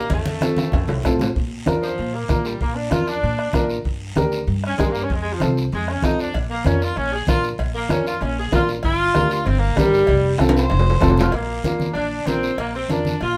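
This festive, danceable cumbia excerpt moves at a brisk 192 BPM in a straight 4/4, settled in Bb major and cycling through Bb, G minor and F chords. An up-front saxophone section carries the melody with a clear, smooth top and light vibrato in a jazz style, stepping into a featured solo passage from 1.4 s. Beneath it, a dark, mellow upright piano supplies intimate vintage accompaniment with short sustain and audible action noise, while a pizzicato upright bass with steel strings adds a woody low end. The percussion bed combines a close, dry bombo struck with a soft beater, low-tuned congas with a thick, damped skin, and a raspy guiro sitting low in the mix. A drum fill opens the piece, and ringing metal-shell cowbell and timbales enter at the start, drop away at 1.3 s, then return at 6.3 s. The bombo stops at 11.2 s, and the whole ensemble sits in a moderate studio reverb.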